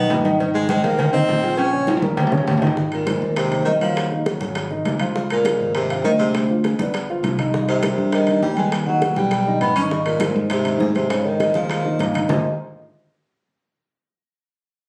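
Captured on a phone in the room with a light studio reverb, this lively, sophisticated Afro-Cuban jazz excerpt moves at a brisk 202 BPM in a straight 4/4, centred on Ab major. A breathy, close-miked baritone saxophone sits up front and takes a solo for the first 2.8 seconds, its vibrato carrying a jazz-style tone before a drum fill leads into the next section. A dark, mellow baby grand piano supplies the accompaniment, while a modern fingered electric bass adds a bright, growly, punchy low end. Congas with a thin, damped skin, tight high-tuned bongos with cowbell, and ringing metal-shelled timbales with agogo bells keep the percussion busy, the congas and bongos sitting in the background. From 2.9 seconds a vintage, band-limited vibraphone played with medium mallets takes the melody, its metallic ring shaded by a slow motor vibrato over harmony that passes through Dbmaj7, Dm7b5 and G7 before settling on Ab69.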